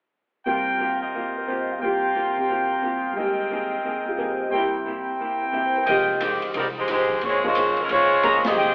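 Swung eighth notes in 4/4 give this dramatic big band swing excerpt, cut from a longer piece, its lilt. From the start, a dark, clean hollow-body electric guitar and a natural-sounding baby grand piano comp through suspended dominant and rich minor chords beneath up-front trumpet stabs that are clear, with a soft attack and a vintage character. At 5.9 s the music moves into a new section as a woody pizzicato upright bass enters in the background alongside an acoustic drum kit with dark cymbals, a medium-tuned snare and a boomy kick. At 6.2 s a bright saxophone section with light vibrato and a smooth top takes the melody up front, and the band hits a shared accent at 8.4 s. The group plays live in one room, framed by a stone-room reverb and a telephone-like tone.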